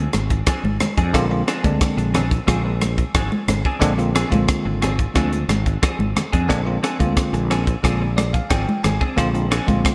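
Bright and soaring, this short excerpt of electric jazz fusion moves at 90 BPM in a straight 4/4, resting on an Abadd9(#11) chord from the first beat. A bell-like tine electric piano carries the accompaniment, clean and direct, and adds a fill from 7.8 to 9.2 seconds near the close. Beneath it, a growly fretless electric bass sits low and amped, while a clean, picked electric guitar adds compressed stabs coloured by analog chorus and digital delay. An up-front fusion drum kit with a tight kick, hi-hat and rim click has a saturated, gritty edge and gated reverb, and congas with a thick, damped skin sit in the background. The whole has a bright 1980s-style digital sheen, with a moderate plate reverb lending space around the parts.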